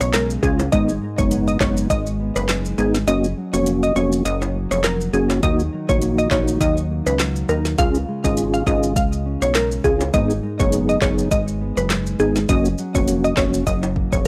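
A dry, gritty recording of a tough, bouncy dancehall groove at 102 BPM with a swung feel, cut from a longer piece, where a glassy wavetable pluck carries the melody with chorus and tape echo over a mellow, flute-like tonewheel organ with key click and a stopped rotary speaker, thumb-plucked nylon-string guitar arpeggios in the background, a punchy, funky sawtooth analog bass up front, an electronic afro-pop drum kit with a deep kick, woody snare, dark hats, handclaps and rim clicks, ringing maracas and timbales, and a barely audible downlifter opening the first 0.7 seconds, while the kick drops out from 3.1 to 5.4 seconds and a drum fill closes at 13.7 seconds over chords moving through Db, Abm, Gb and Ebm.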